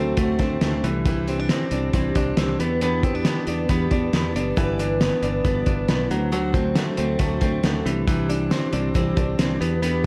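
A dark, lightly reverberant small-room sound frames this bright, nostalgic excerpt of jangly indie pop in a straight 4/4. A picked twelve-string acoustic guitar with a shimmering, octave-doubled, full-bodied tone and audible finger squeak carries the accompaniment, while a clean, compressed electric guitar recorded direct plays vibrato-tinged arpeggios up front and a round, fingered electric bass holds the low end. A muffled, cloth-damped drum kit with a fat snare, tight kick, hi-hat and gritty saturation enters at 0.2 s as the chords cycle through D7, Cadd9, Em7 and G6.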